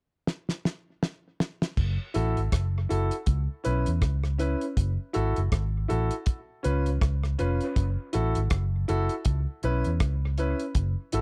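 A swung sixteenth-note groove in 4/4 carries this heavy, deep dub reggae excerpt, opening with a drum fill on a cloth-damped, thuddy kit with a fat snare, tight kick, rim clicks and dark cymbals. The muted, round electric bass enters at 1.8 seconds with punchy transformer saturation, and woody upright piano stabs follow at 2.1 seconds, trailed by tape echo over a cycle of F#m7, C#m7 and C#7. The sound is dry and close, like a 1970s studio, with each part sitting up front.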